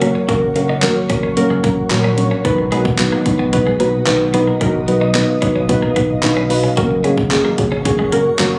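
Dance-pop at 111 BPM in a straight 4/4, this short excerpt in F# major feels upbeat and carefree, moving from F# to B at 2.4 seconds and back to F# at 6.8 seconds. Up front sits a deep, mellow chord stab with a soft, nasal bite, a fast attack, a decaying tail and a filter sweep, thickened by chorus and a sub octave and breathing with sidechain pumping. Beneath it, a round, dark fretless electric bass plays low in the register, sent direct and amped and also breathing with sidechain pumping. A punchy, layered electronic pop kit supplies a fat snare, metallic hi-hats and handclaps. In the background, a picked, clean twelve-string electric guitar plays a compressed riff with subtle chorus, while a glassy, ethereal FM pad holds sustained chords with a slow attack, ensemble chorus, phaser, built-in reverb and its own sidechain pumping. The whole mix is captured on a phone in a room, giving it light club reverb, digital ambience and compression.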